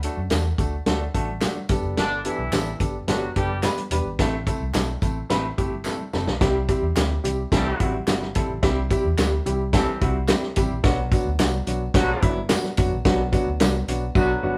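A straight 4/4 groove at 108 BPM drives this uptempo, 1960s-style soul excerpt, warm and uplifting in mood, cut from a longer piece. The dry, mid-forward drum kit sits up front with a tight kick, a medium-tuned snare and hi-hat, its top rolled off, and it plays fills at 5.9 and 14.2 seconds. Underneath, a dark, foam-muted fingered electric bass gives a round, punchy low end, while a woody upright piano with short sustain comps up front through chords moving from D to Gadd9 and Am, then C and Bm. Tambourine, maracas and group handclaps sit compressed and saturated in the background, and very quiet, bright congas with a thin, damped skin join at 0.3 seconds. A clear horn section with vibrato and octave doubling adds a pop-style second line, briefly near 2.0 seconds and then from 7.5 seconds to the end. The band plays live in one room with moderate studio reverb.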